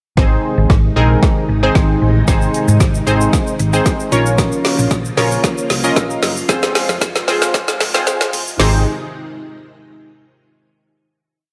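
Euphoric and carefree, this short dance-pop piece at 114 BPM in Ab major builds from 0.2 seconds over a four-on-the-floor deep house drum kit with a punchy kick, woody snare, dark hats and shaker, plus a drum fill and filter sweep. A round, hollow-body fingered electric bass plays a syncopated line with chromatic approach notes, while a bright, detuned sawtooth polysynth pushes funky close-voiced chords with chorus. A lush vintage string machine holds soft-attack sustained chords beneath, and the bass, synth and strings all pump with sidechain under light reverb, until the build resolves on a final Ab chord at 8.6 seconds.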